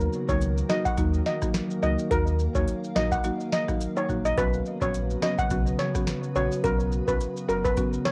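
A bright, shimmering steel pan carries the melody up front from 0.3 seconds, played with hard rubber sticks and given a cassette-tape tint. This sultry, tough dancehall excerpt moves at 106 BPM in 4/4 with a light swing on the sixteenths, sitting in Eb minor and shifting from Ebm to Bsus2 at 4.4 seconds. A booming analog drum machine supplies a deep kick, tonal snare, rim click and metallic hats, sounding tape-warm and re-recorded in a small room. Beneath it, a full sine-and-triangle sub bass with an added octave holds the low end. A woody, buzzing marimba on hardwood bars plays a dry accompaniment, while a glassy, ethereal FM pad with slow attack, ensemble chorus and sidechain pumping sustains the chords. Close acoustic maracas and timbales add a soft percussive layer, and the whole piece has the light reverb of a home cassette recording.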